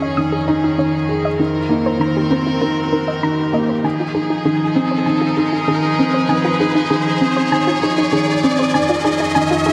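A felt-muted upright piano riff, boxy with audible action noise and a digital delay, opens this moving, hypnotic piano and strings electronica build-up alongside sustained chords from a reedy, gut-string chamber section and soft, round pluck arpeggios with chorus and delay in the background, set in a lush hall reverb, before an electronic riser enters at 1.0 s and carries the passage to its cut-off at 9.7 s.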